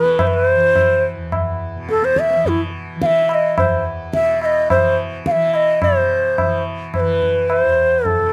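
This Hindustani classical excerpt moves at a meditative, radiant 107 BPM in an even 5/4, with a breathy, reedy bansuri carrying the melody up front between E4 and F5 over a softly plucked, buzzing tanpura drone that shimmers low in the mix. Low-tuned tabla with a short ring joins at 0.1 seconds, and the music shifts into a new section at 5.8 seconds. The sound is dry and open-air, captured outdoors with very little reverb.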